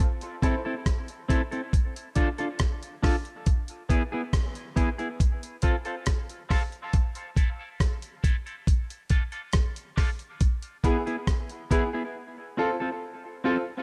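An echo-heavy, dry-roomed mix sets the tone for this short dub reggae passage cut from a longer piece, moving at a slow 69 BPM in straight 4/4 and sitting in A harmonic minor with a deep, hypnotic mood. A dusty, compressed sampler-style drum kit sits up front with a gritty character and a thumpy kick, laying down hi-hat, kick drum and rim click from the start until 11.9 seconds. A clean, picked electric guitar carries the accompaniment, high-pass filtered and soaked in dub echo, with a filter sweep running across it between 3.5 and 10.4 seconds. A bright concert grand piano with brilliant tone, deep bass and short sustain adds echoing stabs, first briefly at 0.4 seconds and again from 10.8 seconds to the close, when it and the guitar carry on after the drums drop out. The chords cycle through Am, Dm, E and F, giving the passage a dark, circling pull.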